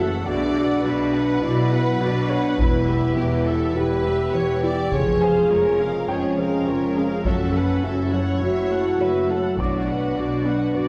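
A mellow French horn section holds sustained chords at the front of this relentless, vast cinematic cue, a hybrid of orchestral and electronic scoring cut from a longer piece, with a lush bowed violin section carrying a distant second line and a smooth viola section filling the accompaniment. Beneath them, a background cello section and a studio double bass section anchor the bass, while a deep, moody analog pad with chorus and phaser sustains chords, a very quiet woody, wave-folded pluck warbles through arpeggios, and a brilliant baby grand piano adds intimate texture with audible action noise. A close, dry taiko ensemble struck with heavy sticks enters at 2.6 seconds and stops at 10.1 seconds, all set in the wet reverb of a recital hall as the harmony moves from Bm through Em, C#/E# and F#m7 back to Bm.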